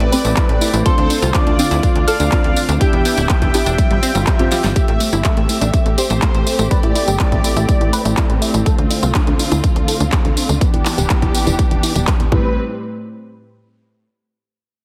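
Progressive house with an emotional, expansive mood, this cut from a longer piece opens in the middle of a drop, driven by a punchy, up-front electronic kick and a pop drum kit with a fat snare, handclaps, hi-hat and tambourine. Underneath, a nasal sawtooth sequencer bass pulses with sidechain pumping, while a detuned sequenced synth plays chorused arpeggios in the background and dark, lush bowed strings hold sustained chords with a woody, vintage 12-bit grit. Up top, a smooth, full-bodied unison supersaw carries the melody through delay, joined by a pure FM synth bell on a high second line with chorus and phaser, and deep, triangle-and-sine chord stabs sitting low in the mix. A drum fill at 4.5 seconds leads into a new section at 4.8 seconds, where the bell and stabs have dropped out and filter sweeps move across both the bass and the arpeggio synth. The supersaw melody stops at 8.6 seconds, leaving the strings, arpeggios and rhythm section to carry the chords back toward a minor ninth at the close. 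The mix is heavily compressed with a radio-style sheen, set in light reverb and digital ambience.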